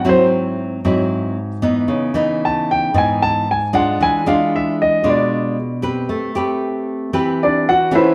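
A straight 4/4 pulse at 114 BPM carries this sunny, romantic bossa nova, cut from a longer piece and tuned to A4 = 439 Hz. A baby grand piano plays the melody and takes a solo across the full 8.1 seconds, ranging from D4 to A5 with a natural, up-front tone. A nylon-string guitar accompanies it throughout, fingerpicked in a deep classical voice from G#2 to B4, close and acoustic, with audible finger squeak. The harmony moves from G#7alt through C#m9 and E7b9 to Am9, lending the brief passage a colorful turn. Both players sound live together in a stone room whose reverb adds a lingering, wet glow to their warm playing.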